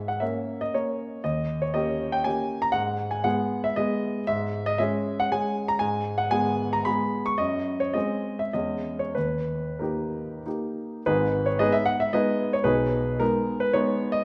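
Capricious and wistful, this short fragment of a romantic triple-time dance in G# minor moves at a rubato 88-126 BPM in 3/4, its dotted rhythms giving the solo grand piano a restless lilt. The piano sits intimate and up front, spanning G#1 to C#6 with audible action noise in its natural tone, while a wet recital hall reverb lingers around it. Harmonies pass from an opening F#9 over G# through D#7 and G#7/F# before settling on G#m/B after 12.7 seconds, where the fragment breaks off.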